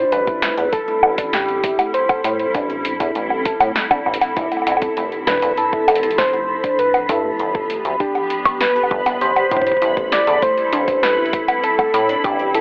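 A round, gentle FM lead with a struck, keys-like tone and chorused tape echo carries the melody up front in this cerebral, melancholic IDM excerpt at 99 BPM in A minor. It plays over a punchy analog drum machine of bongos, metallic hats and snare, a deep electronic kick, a rubbery, saturated acid bass, ringing harp-like plucked arpeggios with phaser, a blurred granular cloud pad, and a bubbling resonant texture with sidechain pumping. Everything cycles through Am7, Fmaj7 and G7 in a plate-reverb space with the worn, warbling drift of old cassette tape and a thin telephone colour.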